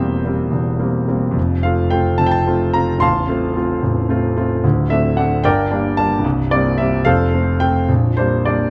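A solo concert grand piano opens on a C7/E chord and settles onto F, unfolding a lyrical, romantic character piece in F major at 73 BPM in a flexible, rubato 6/8. The piano sounds warm and smooth, with a deep bass and a vintage tone placed up front by close, detailed microphones, while a moderate large-studio reverb adds space. Over these 8.7 seconds, taken from a longer piece, the harmony passes through D5, Gm and C5 before returning to F and closing on Gm/Bb.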